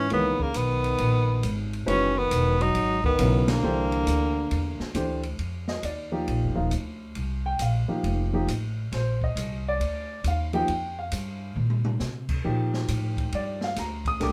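Searching and intense, this modal jazz excerpt swings at 136 BPM in 4/4, moving through suspended, extended harmonies from Gb13sus4 to C9 and on to F13sus4. A tenor saxophone with light vibrato and scooped notes carries the melody up front, while a dark, breathy trombone sings a second line beneath it; both horns play only until 5.0 seconds, with a band accent at 3.4 seconds. A woody, thumpy upright bass on gut strings anchors the group throughout, joined by a smooth, vintage grand piano in accompaniment. An open acoustic drum kit with dark cymbals and a boomy kick runs the whole way, adding a fill around 11.6 seconds. The studio room has a moderate reverb that gives the ensemble a natural sense of space.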